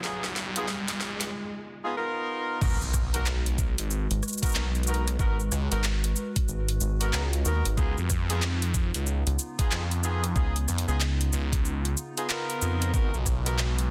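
Glitch hop at 93 BPM with a 16th-note swing in G# dorian, gritty and swaggering, this cut-from-a-longer-piece opens on a short build-up where a drum fill, a riser and a filter sweep on the warbling, nostalgic lo-fi pad lead into the drop at 2.6 seconds, marked by an electronic impact. A thick, swirling phased saw bass sits up front alongside a knocking, tape-warm kick and a dubstep kit with a huge snare, metallic hats, handclaps, rim clicks and shaker, while a smooth-topped horn section with light vibrato punches stabs through delay and sidechain pumping over chords moving between C#9 and G#m7. A rubbery, hollow, wave-folded square bass bounces in from 4.1 to 11.3 seconds, all within a dense, heavily limited, dry mix.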